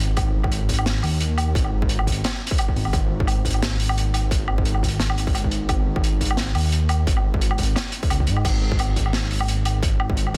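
Heavy and dark, this half-time drum and bass drop, cut from a longer piece, pairs a deep, rumbling detuned saw bass sitting up front between G#1 and G#2 with a gritty, saturated breakbeat kit of dark cymbals, hi-hat, snare and woodblock, while a distorted electronic kick enters at 0.2 seconds, all in a dense, heavily limited mix with little reverb.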